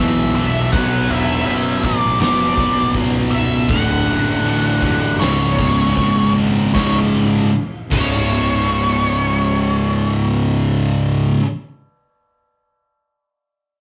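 A straight 4/4 pulse at 79 BPM drives this heavy, hypnotic stoner and doom metal passage in C# phrygian, cut from a longer piece, and the tempo slows from 0.7 to 6.8 seconds. An oversized, low-tuned acoustic drum kit enters at 0.7 seconds with a boomy kick, a fat snare, dark cymbals and hi-hat, sounding saturated and gritty in a big, pumping room until it stops at 8.1 seconds. Beneath it, two thick fuzz guitars, one very quiet and one with added distortion, grind out the low riff alongside a bright, overdriven, double-tracked electric guitar and a growly, fuzzed picked bass, all sitting in the background over chords moving from E5 through Bm and D to C#5. On top, a dark octave-fuzz lead guitar carries the melody with wah and distortion, ringing out until 10.6 seconds. The rough rehearsal-room recording is bathed in wet studio reverb, giving the whole sound a heavy weight.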